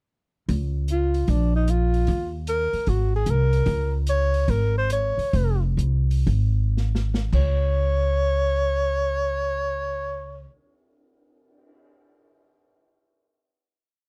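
A dry, close studio sound in a 1970s style frames this short, playful piece of small-group swing in Db major, moving between 105 and 151 BPM with a swung 4/4 feel. A breathy, whispered alto saxophone sits up front with an intimate subtone and vibrato, stating a bebop-style theme over a woody, thumpy upright bass in a two-feel and an acoustic drum kit with dark cymbals, a boomy kick and time kept on the hi-hat. The tempo slows from 3.7 seconds, a drum fill arrives at 6.8 seconds, and a held final note rings from 7.3 seconds to the close.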